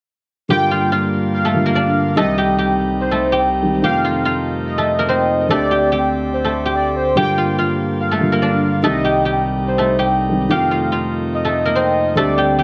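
Hip hop excerpt with a menacing, hard-hitting half-time feel, led by an up-front, silvery guzheng played with fingerpicks and joined by a velvety, detuned synth lead carrying a second line through chorus and delay, over a dark vintage baby grand piano and sustained chords from a nasal, chiffy pipe organ cornet stop, in a moderate plate reverb.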